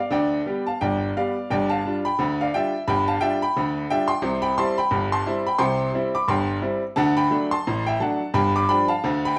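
Jaunty and cheerful, this short ragtime piano excerpt moves at 87 BPM in 2/4, with a light swing on the sixteenth notes. A clear baby grand piano plays solo throughout the 9.4 seconds, ranging from G1 up to D6. Its tone is natural and intimate, with the mechanical action audible beneath the notes. The piano sits up front, yet the wet studio reverb, with a 0.7-second tail, places the listener a little further back in the room. The harmony moves from G7 through G5 to C at 4.2 seconds, then D, before landing back on G7 at 8.3 seconds as the fragment cuts off mid-piece.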